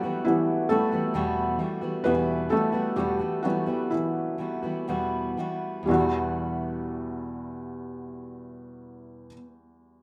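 A felt-muted upright piano and a fingerpicked steel-string acoustic guitar open together on an Emadd9 chord in this melancholic, emotional pop excerpt in E minor, set in 4/4 at a slow 60-68 BPM with a straight feel. The piano takes the featured role through the first 5.9 seconds while the tempo slows down, its soft, mellow, intimate tone sitting up front with audible action noise. The guitar's arpeggios sit up front as well, with the full-bodied resonance of a jumbo steel-string body. After 5.9 seconds the piece moves into a new section, where the guitar's arpeggios stop at 9.5 seconds and the piano's accompaniment continues to the end at 10.0 seconds. A moderate studio reverb and a rough home-demo mix give the recording a natural, unpolished closeness.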